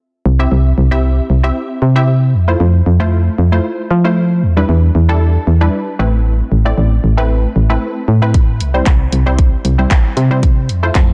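Euphoric and summery, this dance-pop excerpt moves at a straight 115 BPM in C major. A round, mellow FM bass and a lush, detuned unison pluck with a wave-folded, filter-swept edge both pump with sidechain from the opening moments, over chords cycling through C, Fmaj7, Em7 and Amadd9. At 8.3 seconds a layered house drum kit arrives up front with a punchy kick, bright hi-hats and handclaps, all set in light reverb within a dense, heavily limited modern master.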